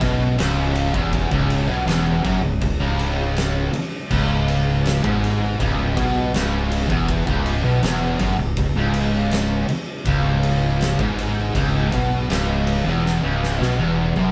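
A bright, double-tracked overdriven electric guitar riff sits up front in this heavy, sludgy stoner and doom metal excerpt at 81 BPM in C# minor, alongside two picked fuzz guitar riffs tucked low in the background, a growly, punchy fingered bass, a very quiet, flute-like tonewheel organ holding sustained chords through a slow rotary speaker, and an oversized, gritty low-tuned kit with a boomy kick, fat snare and dark cymbals in a pumping big room, all played live with light reverb and closing on a drum fill from 13.0 s.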